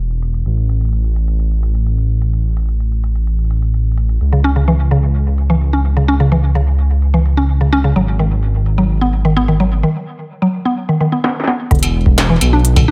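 A dark, detuned sawtooth bass rumbles up front from the start of this melancholic, intricate IDM excerpt at 128 BPM, its saturated, beating unison tone sitting deep beneath an industrial kit of clanging snare, crisp filtered hats, struck metal and toms, all treated with low-pass filtering and delay in a small-room sound. At 4.3 seconds a woody, nasal FM mallet pluck enters with arpeggios, colored by chorus, cassette-tape grit and dub echo. After a break and a drum fill, an analog, tape-warm electronic kick joins at 11.7 seconds as the harmony lands on an E5 chord under light reverb.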